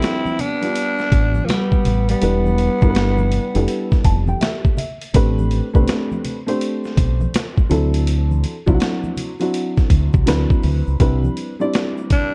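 A growling tenor saxophone carries the melody in this relaxed jazz-hop excerpt, its breathy, raspy subtone full of vibrato and scooped notes before it falls away at 4.3 seconds and returns briefly as a solo at the very end. Set in C major at 82 BPM in 4/4 with a swung sixteenth-note feel, the track rides on a gritty boom bap sampler-style drum kit with a thumpy kick, a high-tuned snare and hi-hat, compressed and re-recorded in a large room. A deep, round dub bass, fingered and up front, enters at 1.1 seconds. A dark upright piano plays throughout, woody, worn and slightly detuned with audible action noise, and adds a fill at 3.7 seconds. A slightly broken-up electric guitar plays a second line with spring reverb at the opening, while bright tube shaker and congas with soft hands sit in the background. The chords move from G9 through Em7, Am11, D9 and D13 before settling on Cmaj9, and the whole production is dark and dry.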